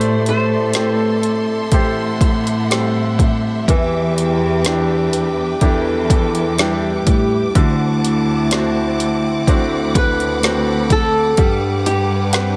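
Heartbroken and melancholic, this slow pop ballad excerpt in E minor at 62 BPM pairs a punchy, up-front deep house drum kit and a dark, sul tasto cello section on bass with clear concert grand piano, mellow French horns, lush distant strings with portamento, and a full-bodied fingerpicked steel-string acoustic guitar with digital delay, while a bright thumb-plucked flamenco guitar with delay carries the melody only at the opening and again from 10.0 seconds over chords moving from Am7 through Em7 and D7 to Gmaj7 in a small room with light reverb.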